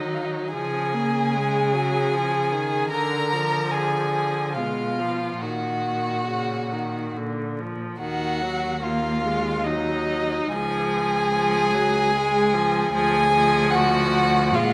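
Classical slow romantic movement for string quartet in Eb minor, cut from a longer piece and played at 68-76 BPM in a rubato 3/4, with a yearning, solemn mood: throughout the 14.7 seconds, a warm, close first violin sings the expressive melody with soft attacks and portamento, a clear second violin sits up front on its own line, a rich, smooth-topped viola fills in the accompaniment and a focused cello holds the bass, all four bowed with vibrato by single players and set in a moderate recital hall reverb under a vinyl crackle.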